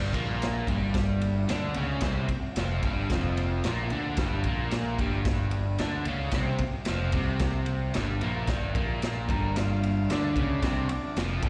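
A crunchy, overdriven guitar riff opens this short garage rock clip at 111 BPM in a straight 4/4, its picked, double-tracked tone sitting up front with spring reverb and slapback echo, while a growling fingered bass, overdriven and amped, pushes underneath from the start. The raw drum kit joins at 0.1 seconds with a punchy kick, medium-tuned snare and ride cymbal, its gritty, saturated sound carrying a pumping small-room character and a rolled-off top. The mood is raw and swaggering, captured as a live gig heard through the venue's PA with a recital hall reverb around the band. At 8.5 seconds the music moves into a new section, and a vintage transistor combo organ enters at 9.3 seconds with a buzzy, clean melody touched by slapback echo. The organ drops out at 11.2 seconds, just before the clip, cut from a longer piece, ends at 11.5 seconds.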